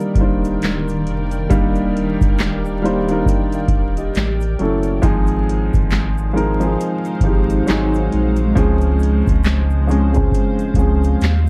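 Cosy and nostalgic, this short lo-fi hip hop excerpt moves at a relaxed 68 BPM in 4/4 with a swung sixteenth-note feel, wrapped in a dark production dusted with vinyl crackle and light reverb. A woody upright piano sits up front with long sustain, its tone softened by cassette tape, a low-pass filter and plate reverb as it plays accompanying chords from Ebmaj7 through A6, Ab6 and Ab7 before settling on Dbmaj7 at 8.6 seconds. Beneath it, a granular cloud pad spreads blurred, evolving sustained chords with a slow attack and long release, full-bodied and detuned in unison. A booming analog drum machine, re-recorded in a large room, drives the groove with a deep kick, crisp snare, metallic hi-hats and handclaps, while a round sine sub bass enters at 0.2 seconds to hold down the low end. A grainy, bright tube shaker sits very quiet, close and dry in the background until the cut at 11.5 seconds.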